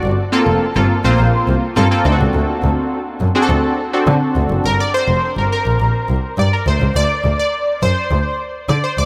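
A straight 4/4 groove at 104 BPM drives this slick, danceable early-eighties boogie funk in G minor, where a punchy, nasal, detuned sawtooth polysynth comp with chorus and filter sweeps moves between Gm11 and D7 over a rich, close, bowed double bass full of vibrato and portamento, until an analog polysynth solo joins them at 4.7 s, all bathed in a dreamy, cavernous cathedral reverb.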